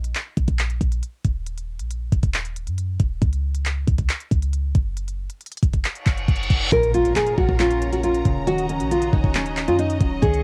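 A dry, home-cassette recording carries this hard-hitting, eerie half-time trap beat. From the start and throughout, a tape-colored electronic kit with a knocking kick, crisp hi-hats and handclaps sits up front over a deep, boomy, sine-like 808 bass, and an electronic reverse cymbal at 6.0 seconds leads into an impact. At 6.7 seconds a full-bodied, fingerpicked nylon-string guitar takes the melody up front, backed by a thumb-plucked, ringing concert harp and a distant, lush bowed string section with vibrato holding sustained chords, both with tape coloring.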